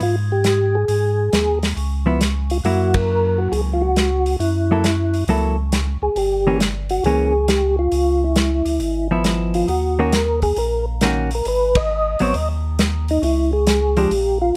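Lightly reverberant and close, this greasy, soulful soul jazz organ trio swings over a soft, flute-like percussive tonewheel organ melody colored by chorus vibrato and slow rotary speaker, while a piping, scooped tonewheel organ bass turns through the same slow rotary. A tight, up-front drum kit with dark cymbals, a medium-tuned snare and a pumping room sound drives the groove, and a dark, compressed hollow-body jazz guitar joins the accompaniment at 2.1 seconds. The band hits accents at 2.9 and 11.7 seconds, with the chords moving through altered dominant and diminished colors in this excerpt.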